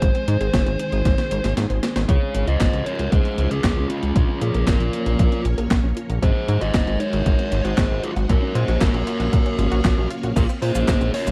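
A dark, distorted fuzz lead guitar carries the melody across this short italo disco excerpt, its compressed, picked tone colored by a low-pass filter and tape echo. Beneath it, a full-bodied string machine holds slow-attack sustained chords thickened by ensemble chorus, while a very quiet, detuned unison pluck runs arpeggios in the background. A glossy chorused synth bass sits up front, blending pulse-width modulation and sawtooth into a filter-plucked line. The punchy, tape-warm electronic kick drives a straight pulse alongside a sampler-style drum machine of cabasa, hi-hat, handclaps, crash, toms and a gated-reverb snare, with a drum fill from 1.1 to 2.1 seconds as the kick drops out from 1.6 seconds. The chords move from Ab through Dbmaj7, Bbm, Ab7 and Gbmaj7 to Bbmadd9, and the dry, close 1970s-style sound with vinyl crackle gives the whole a nostalgic, melodramatic mood.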